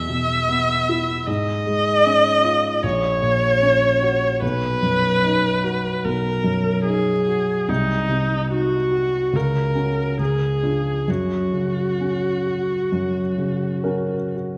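Warm and lyrical, this short passage is a romantic classical duo for viola and grand piano in F# major, cut from a longer piece. It moves in 4/4 at a relaxed 56-78 BPM with a flexible rubato feel. The solo viola carries the melody with a rich, bowed tone, singing expressively with vibrato and portamento. Beneath it, the grand piano provides an intimate, natural-sounding accompaniment, its action noise clearly audible. The harmony travels from C#/G# through G#m7/B and a Cdim before settling through C# onto F# near 11.1 seconds. A wet scoring-stage reverb with a 1.5-second tail surrounds the pair, while both instruments stay up front in the mix.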